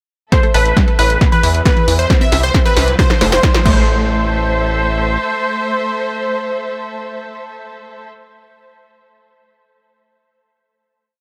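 A lightly reverberant mix opens this short, complete uplifting trance piece in A minor at 135 BPM, bittersweet yet driving, where a detuned sawtooth supersaw stab carries the repeating riff melody with phaser, delay and sidechain pumping, doubled in unison by a very quiet, worn baby grand piano and set over smooth, bowed string chords with light vibrato. Through the build-up from 0.3 seconds, an up-front four-on-the-floor kick and a small-room analog drum machine with hats, backbeat snare and crash drive a drum fill, while a round, chorused analog pluck sequences arpeggios in the background and, from 0.5 seconds, a gritty, nasal, saturated synth bass pushes off-beat notes. A very quiet riser leads into the final hit at 3.9 seconds, where the stab, piano and strings ring on to 8.1 seconds.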